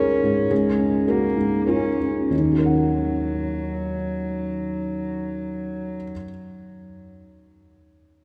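Neoclassical piano and strings in a melancholic, fragile mood, this brief fragment moves in a rubato 3/4 time that slows down over its first 2.3 seconds before settling onto an Ebm7 chord. A felt-muted upright piano carries the accompaniment up front, its soft, dark, intimate tone thick with felt and marked by audible action noise, while a single bowed cello plays a floating second line sul tasto with a pure, smooth top. A long cathedral reverb gives the recording the spacious feel of a church or concert hall, with the piano stopping at 6.3 seconds.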